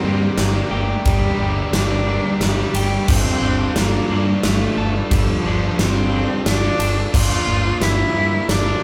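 A rich, bowed cello carries the melody with vibrato, portamento and a soft attack in this brooding, cathartic post-rock fragment in 3/4, set against a huge arena drum kit that sits up front with bright cymbals and a punchy kick from 0.4 s. A growling, overdriven fingered bass anchors the low end, while two very quiet picked guitars, one distorted and the other an overdriven hollow-body, share a riff, and a clean guitar plays arpeggios in the background until 7.1 s. Underneath, a reedy, breathing pedal harmonium holds sustained chords, and the band plays live in one room with moderate large studio reverb.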